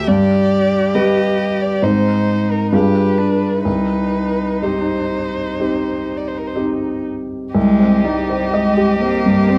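Set in a dark, moderately reverberant studio sound, this yearning, solemn excerpt from a slow romantic piano quartet movement in C minor moves with rubato at 60-69 BPM over G, Ab and G7b9 harmonies resolving to Cm, as an up-front, natural-sounding baby grand piano accompanies an expressive violin melody and a rich cello second line, both softly attacked with vibrato and portamento, until a focused, smooth-topped second violin line joins at 7.6 seconds.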